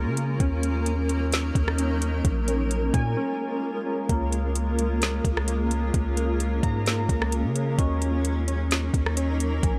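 A digital ambience surrounds this blissful, dreamy cloud-rap excerpt, a hip hop piece at 130 BPM in 4/4 with a half-time feel, tuned to A4 = 436 Hz. A granular cloud pad holds blurred, detuned chords through built-in reverb and sidechain pumping, while warbly lo-fi synth keys spin nostalgic arpeggios through chorus, a low-pass filter and digital delay. Up front, a deep, sine-toned 808-style bass sustains long, mellow notes, and a smooth R&B kit with a soft kick, woody snare, rim click and metallic hats enters at 0.2 seconds with a tape-warm polish. After a break from 3.2 seconds, a dark marimba played with medium mallets joins in the background at 4.1 seconds. The harmony drifts from Ebm7 to Bbm7, settles on Db6 and returns to Ebm7.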